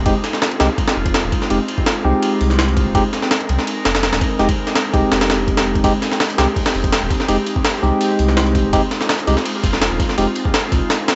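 A drum and bass and jungle excerpt with an atmospheric, nostalgic mood, where a gritty, overdriven sampler-style kit with a thumpy kick sits up front over a round dub sub bass, clean tine electric piano stabs with dub echo and an airy, breathy pad holding a single Fm7 chord, joined at 5.8 seconds by a very quiet, dark breakbeat kit with hi-hat and tambourine, all captured with a dry, gritty cassette-tape sound in a small room.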